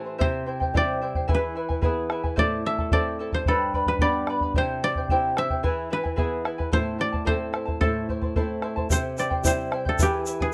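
Opening on a brief break, a mellow, woody koto carries the melody up front over a shimmering, fingerpicked charango with double strings, some of them octave-doubled, and a boxy flamenco guitar with audible finger squeak, joined at 0.2 s by a round, close bombo in this melancholic, wistful Andean folk excerpt at 110 BPM in 2/4 and A minor, which moves through C, E, Am and G before a grainy tube shaker enters at 8.9 s as the section repeats, captured in a rough home demo mix with light reverb.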